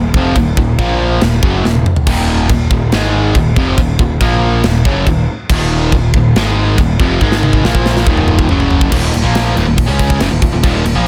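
Heavy metal at 140 BPM in Eb minor, aggressive and relentless: a double-tracked, overdriven electric guitar riff and a punchy fuzz bass drive over a tight, polished acoustic drum kit with bright cymbals and a china. The drums sit in a half-time feel with fills at 1.6 and 7.2 seconds before the music shifts into a new section at 8.9 seconds, all in a dry, dense, heavily limited modern mix cut from a longer piece.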